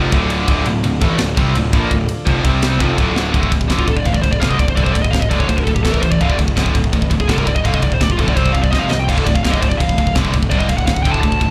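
Aggressive, relentless heavy metal heard as a live club gig through the venue's PA, cut from a longer piece, opening in half time with a faint, brilliant pipe organ plenum holding chords and a very quiet, double-tracked sludgy guitar riffing until 3.3 seconds. Beneath them, two picked, distorted rhythm guitars (one heavy and high-gain, one tight) churn out riffs with slapback echo in the background, while a growly, punchy fuzz bass and an up-front, polished drum kit with a tight kick and bright cymbals drive the band, with drum fills marking the changes. From 3.8 seconds a dark, high-gain lead guitar with slapback echo and delay launches into a solo that carries the rest of the passage.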